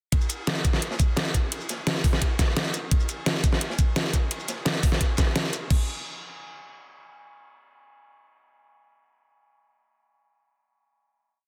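A tense, futuristic drum and bass drop opens at once with an up-front, knocking electronic kick, a tight dubstep kit of deep snare, metallic hats, rim clicks, shaker and crash, and a quieter, gritty, saturated acoustic breakbeat loop with edits, dark cymbals and a rolled-off top, all under light reverb in a dense, heavily limited master before a final hit lands at 5.7 seconds.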